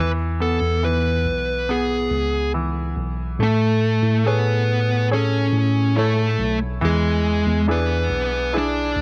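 This pop ballad moves at a slow 70 BPM in a straight 4/4, carrying a melancholic, longing mood through a short passage cut from a longer piece. An overdriven lead guitar, dark and smooth in tone, sits up front and carries the picked melody throughout. Underneath, a bright grand piano supplies polished, brilliant accompaniment with a short sustain. The bass line comes from a mellow tine electric piano, clean and heard through its built-in speakers, also placed up front. The harmony settles on E, shifts to Amaj7 at 3.4 seconds as a new section begins, and turns to E7 at 6.8 seconds, all captured in a dry, close 1970s-style studio sound with light reverb.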